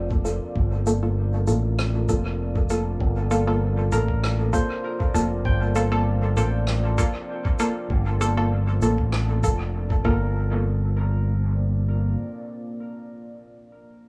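Hazy and meditative, this short ambient dub excerpt settles into a relaxed 98 BPM groove in G minor, resting on a single Gm9 chord with a light 16th-note swing. A deep, moody pad of detuned sawtooth and sine layers with a sub octave and a moving notch holds sustained chords throughout, its slow attack and long release softened by chorus, built-in reverb and a gritty vintage sampler character. Up front, a bright, punchy fingered electric bass with an envelope filter and tube saturation sits low, while filtered dub chord stabs with a fast, mellow pluck drift through chorus and dub echo. The muffled, thumpy kick drum has a compressed, tape-warm tone, joined by a natural acoustic shaker and rim click that trail off into dub echo. From 3.9 seconds a ringing, fingerpicked concert harp adds arpeggios through tape echo, all set in a small room with an echo-heavy mix.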